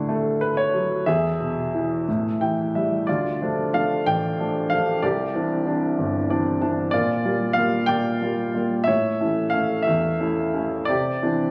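Calm and tender, this classical piece for solo piano drifts along at about 61 BPM in 6/8, its beats uneven and pulled freely in rubato. A grand piano with a smooth, vintage tone sits up front and carries everything alone, ranging from G1 up to A5. The harmony opens on D and E before settling into D minor at 3.1 seconds, then moves through Dm, Cadd9, Gm7/Bb and A before returning to Cadd9. Short piano fills arrive around 2.1 and 6.0 seconds, marking the shift into the second section and decorating the phrase that follows. The sound carries a moderate scoring-stage reverb, while the phone capture in the room adds a club-like ambience. As a brief cut from a longer work, it feels intimate and gently reflective.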